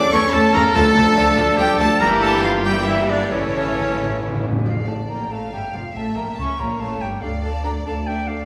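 Stormy and urgent, this brief cut from a quick classical-period orchestral movement in D minor surges in a rubato 6/8 at 88-97 BPM. A rich, close violin section carries the melody alongside a silver flute, while a bright clarinet and clear oboe add second lines until 4.4 seconds, alongside sustained French horn chords and distant trumpet stabs. A background violin line, lush violas and a clear, intense cello section run throughout with soft-attack double basses, and timpani on medium mallets enter at 0.8 seconds for a fill from 3.3 to 4.7 seconds, all set in a wet recital-hall reverb.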